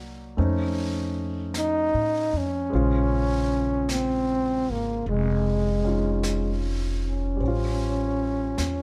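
A breathy trombone carries the melody in this intimate, wistful jazz ballad, entering at 1.6 seconds with a soft attack, scooped notes, light vibrato and a whispered, smooth top that sits up front. Beneath it, a concert grand piano supplies the accompaniment with deep bass, long sustain and audible action noise. The upright bass is plucked on gut strings, giving a woody, thumpy and dark foundation that also sits close to the listener. A jazz kit played with brushes joins at 0.4 seconds, its brushed snare and hi-hat airy and polished in a small room, well beneath the other parts. The slow, swung 4/4 feel moves through F7b13, Bbm9 and A7alt under light reverb, and the passage is cut from a longer piece.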